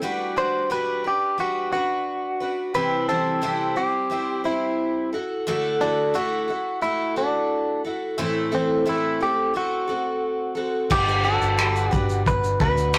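A rough rehearsal-room recording with warm saturation and moderate reverb carries this heartfelt, sunny acoustic pop fragment in G major at 88 BPM, where a shimmering, octave-doubled twelve-string acoustic guitar picks the accompaniment from the start, a twangy, direct, clean electric guitar plays the melody from 0.4 seconds, and at 10.9 seconds a round, foam-muted vintage bass and a cloth-damped, muffled drum kit with a tight kick, dark crash, finger snaps and shaker join in.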